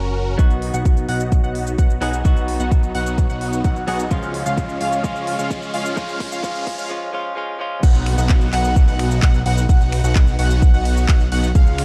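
Triumphant and anthemic, this festival progressive house excerpt at 129 BPM opens with a clean, direct-recorded electric guitar and huge detuned supersaw chords over a fat, nasal analog bass, all pumping under sidechain, beneath a very quiet warbling pad, before a bright plucky lead arpeggio, a punchy up-front kick and a crisp pop kit with handclaps, snaps and cabasa join at 0.4 seconds for a build-up of filter sweeps, a background riser and a drum fill that breaks into the drop at 7.8 seconds, moving from B to C# and back to B within a dark, lightly reverberant production.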